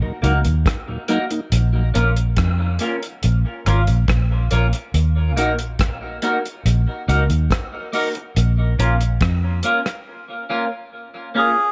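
Heavy and spacious, this slow dub reggae fragment moves at 70 BPM in a straight 4/4, sitting in Eb minor and shifting between Ebm and Bbm. A soft, flute-like tonewheel organ with audible key click and a slow rotary speaker opens the piece, drifting through tape echo before falling away at 1.4 seconds. A round, foam-muted fingered bass sits up front with a punchy, amped tone, beneath a cloth-damped, thuddy drum kit whose tight kick, hi-hat and rim clicks carry a rolled-off top and their own tape echo. A clean, picked electric guitar, also up front, runs through phaser and echo into the break at 10.1 seconds. At 11.4 seconds a reedy, breathy, nasal melodica sounds one brief Ab4 before the cut, all set in an echo-heavy studio ambience.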